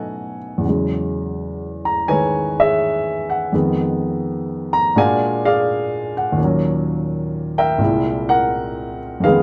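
Swung eighths loosened by rubato carry this moody solo jazz passage at 84 BPM in 4/4, where a lone grand piano, intimate and up front with its action noise audible under light reverb, ranges from C2 to Bb5 through colorful chords such as B9, E69, Fm7b5, Bb7b13 and C7b13 across 9.4 seconds taken from a longer piece.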